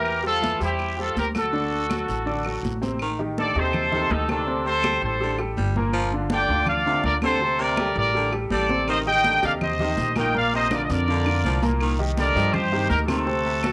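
Recorded at home on cassette in a small, moderately reverberant room, this driving, passionate salsa clip at 163 BPM puts a punchy, vintage trumpet section up front on the melody over clear, polished baby grand piano accompaniment and a dark, thumpy pizzicato upright bass with gut strings, while woody claves and bright, high-tuned congas sit in the background, a close, dry guiro scrapes until 3.0 seconds and returns at 8.9 seconds, and a gritty baritone saxophone with light vibrato adds a raspy second line from 3.0 seconds.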